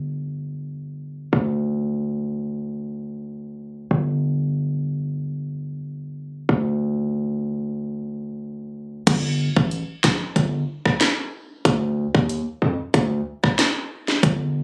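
A punchy, heavy 808-style bass with a sine body and a noise layer sits up front through this bouncy, tough dancehall excerpt, decaying after each fast attack, and a tight, electronic island pop drum kit joins it at 9.1 seconds with sharp snare, rim click, crash and hi-hat, all caught on a phone in a dry room with studio ambience.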